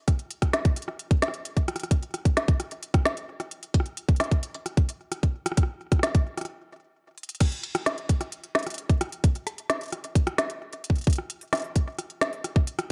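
A tight, up-front electronic kick and a produced drum kit with a woody snare, smooth hi-hats, rim clicks, crash cymbal and touches of delay open this glitchy, melancholic IDM excerpt at 131 BPM in a straight 4/4, dropping out at 6.5 seconds before a drum fill at 7.2 seconds brings the groove back, all within a dark, tape-warm production with light reverb.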